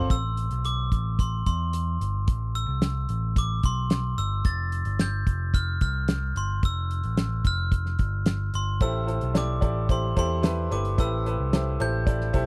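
A straight 4/4 pulse at 110 BPM anchors this hopeful, warm slice of piano-driven pop, cut from a longer piece and tuned to A4 = 443 Hz. The damped 70s drum kit sits up front with a fat snare, tight kick and hi-hat, while a picked electric bass, amped and warm, holds the low end close beside it. A glockenspiel struck with brass mallets carries the melody high above, its metallic, bell-like tone ringing and sparkling. The harmony rests on A minor, drops to a chordless stretch at 4.5 seconds, and settles on A minor seventh at 8.8 seconds, where the bright upright piano returns with a woody, brilliant, natural voice after a brief touch at the very start. The dry, close 1970s-style studio sound carries little reverb, keeping every listed part present and immediate.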